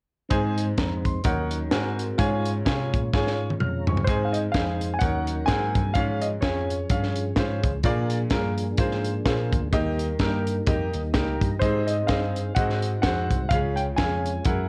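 A swung 4/4 groove at 127 BPM drives this reverent, jubilant uptempo gospel clip in Ab major, with a tight, up-front funk drum kit (high-tuned snare, tight kick, hi-hat and toms) and a bell-like tine electric piano carrying the bass line. A brilliant concert grand plays accompaniment over a soft, flute-like tonewheel organ that holds chords in the background through a fast rotary speaker with chorus vibrato and key click, while a polished, present grand piano melody enters at 4.0 s and returns at 11.6 s. A drum fill at 3.1 s leads into the second section, and the whole clip sits in a small room with light reverb and a worn, warbling cassette-tape pitch drift.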